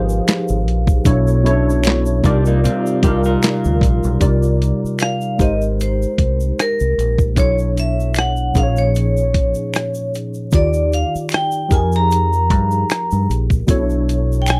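Sultry and soulful, this short neo-soul and R&B passage moves with a lightly swung sixteenth-note feel over lush minor eleventh chords such as Fm11 and Cm11, drifting toward Abmaj7 and Ebmaj7. A vibraphone struck with hard mallets carries the melody, its metallic, ringing tone shaded by a medium motor vibrato and a boxy small-room sound, and it is featured as a solo through the opening 4.2 seconds. Beneath it, a worn, slightly out-of-tune tine electric piano supplies the accompaniment, lightly overdriven and thickened with ensemble chorus, while a dark, round, punchy fingered electric bass sits up front. A soft egg shaker and finger snaps come in at 0.1 seconds, followed at 0.3 seconds by a gritty, pitched-down boom bap sampler-style kit with a thumpy kick, high-tuned snare, rim click, hi-hat and handclaps. Briefly, from 2.3 to 4.2 seconds, an electric guitar through a small old amp adds a slightly broken-up, lo-fi second line bathed in spring reverb. 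The overall sound is dry and close, like a 1970s studio recording, and the passage is cut from a longer piece.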